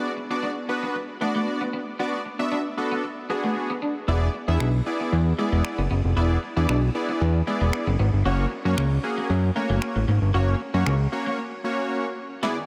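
A big, bright polysynth, nasal and detuned with ring modulation and chorus, carries the chords up front in this driving, confident dance-pop piece, while a clean, picked electric guitar with analog chorus plays a riff beneath it. A fat, saturated sawtooth bass with a filter pluck enters at 4.1 seconds, followed shortly by punchy, overdriven electronic finger snaps and snare in the background, before a break at 11.4 seconds, a drum fill and a brief riser close the passage. The mix is dreamy and soaked in a huge ambient reverb.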